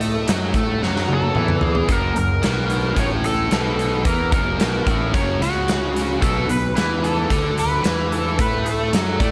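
A tight, double-tracked distorted guitar riff opens this swaggering, driving blues rock and southern rock excerpt alongside growly fuzz bass and a huge, punchy arena drum kit, and during a drum fill from 0.8 seconds an overdriven slide guitar enters with a bright melody at 1.1 seconds over chords moving from Esus24 to F#7 and B5, with lush hall reverb lending a big arena sound.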